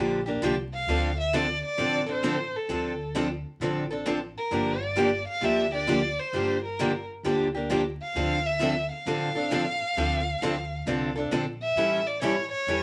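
A crackly, vinyl-flecked recording set in a snug, wet studio room opens this short, fiery cut of jazz manouche, swinging in 4/4 over a minor-key progression that settles on a dominant chord near 11.8 seconds. Two picked steel-string acoustic guitars drive the accompaniment, one a boxy, up-front parlour model and the other a full-bodied dreadnought with fresh strings, while a woody, growly pizzicato upright bass thumps low underneath. From 0.7 seconds a close, up-front bowed violin carries the virtuosic melody with vibrato, portamento and a soft attack.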